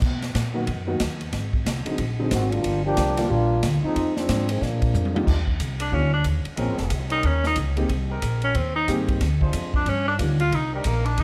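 Joyful and swinging, this big band jazz excerpt rides on a woody pizzicato upright bass, a polished drum kit with dark cymbals and a punchy kick, and natural-toned accompaniment from a baby grand piano; a mellow trombone section adds a second line from 2.3 seconds, a drum fill arrives at 4.9 seconds, and a clear tenor saxophone with light vibrato solos from 5.8 seconds over soft-attack sustained chords from a bright trombone section, all in a light reverb.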